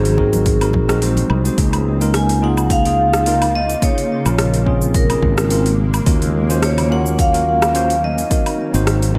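A growly, up-front fretless electric bass anchors this blissful, smooth sunset chillout excerpt with a swung sixteenth-note feel, as a ringing hard-mallet vibraphone with motor vibrato and delay carries the melody over a clean tine electric piano with tape echo and a shimmering, ethereal pad in the background, while an overdriven deep house kit of metallic hi-hats, cabasa, rim click and woodblock pairs with a deep, overdriven electronic kick, with very quiet, dry congas heard only from 0.2 to 1.3 seconds, all set in a dreamy plate reverb.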